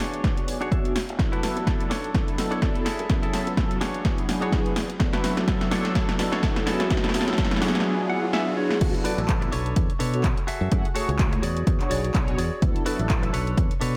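A dreamy mix soaked in lush hall reverb gives this filtered disco house piece a nostalgic, funky glow, and it is cut from a longer piece. A punchy, overdriven electronic kick sits up front, while an analog drum machine supplies a punchy snare, handclaps, hi-hats and crash cymbal, with its hats and cymbals pumping against the kick. Beneath them, a growly fingered electric bass stays in the background, filtered and pumping, as a mellow synth brass pad spreads round, detuned sawtooth tones through chorus, phaser, cassette-tape colour and an evolving filter sweep. On top, a bright, twangy clean electric guitar plays a picked riff roughened by vintage 12-bit sampler grit, adding short fills along the way. A very quiet riser enters at 5.0 seconds during the build-up, and drum and guitar fills lead into the drop at 8.8 seconds, where the lush extended chords keep cycling under a lightly swung groove.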